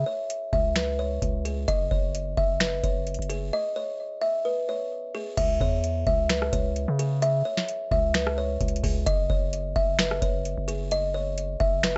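Lightly reverberant and dusky, with the top end rolled off, this dark, brooding trap excerpt moves at 130 BPM in a half-time feel in C# minor. A deep, sine-like 808-style bass with long decaying notes sits up front beside a woody, buzzing kalimba melody plucked with the fingertip and trailed by delay, while a booming analog drum machine, re-recorded in a small room, brings a deep kick, crisp snare, metallic hats, finger snaps, rim clicks and crash cymbal. A break arrives at 3.5 seconds before the harmony settles onto C#m at 5.4 seconds, moving to F#5 at 9.1 seconds.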